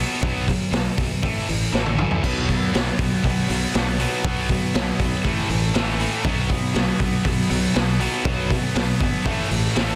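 Hard rock at 120 BPM in a straight 4/4, menacing and heavy, this excerpt opens with a bright, high-gain guitar riff over a growly, punchy fingered bass and a boomy, gritty garage drum kit set up front, moving between B5 and A5 chords. After a drum fill from 1.7 to 2.2 seconds, two more distorted guitars join the riff at 2.2 seconds, one scooped and very quiet, the other double-tracked and sitting in the background. The small-room sound carries light reverb under a dense, heavily limited modern master.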